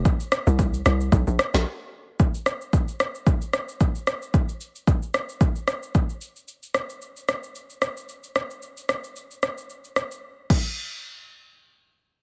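Deep and hypnotic, this amapiano excerpt at 112 BPM with a 16th-note swing opens on a hollow, bouncy FM log drum bass with a noisy, fast-attack decay that sits up front until 1.6 s, while an electronic, layered deep house kit with a punchy kick, woody snare, rim click, shaker and crash plays from 0.1 s to 10.6 s, all dry and squeezed into a heavily compressed, radio-like sound.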